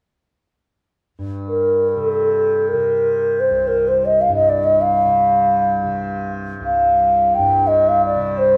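In free time, this meditative, longing fragment of Indian classical music opens with a softly plucked, buzzing tanpura drone at 1.2 s, joined at 1.5 s by an up-front bansuri singing a pure, hollow, straight-toned melody, all captured live in one room and bathed in the lush reverb of a large studio.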